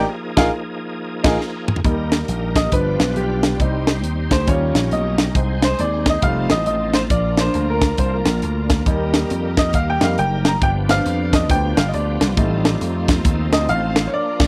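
Uptempo gospel in E-flat major, hopeful and jubilant, moving at 137 BPM in 4/4 with a swung eighth-note feel, cut from a longer piece. A woody, up-front upright piano, slap bass with an amped, punchy tone and an overdriven tonewheel organ holding gritty, shouting chords through a slow rotary speaker with chorus vibrato open together. A tight funk drum kit with a high-tuned snare joins at 0.4 seconds for band accents and a short fill that leads into the next section at 1.8 seconds. There a very quiet, lush bowed string section enters beneath the band as the piano takes a solo over changes that move from E-flat through G7, C minor and F7. The sound is a dry, close 1970s-style studio recording with light reverb, and the band hits one more accent in the closing half second.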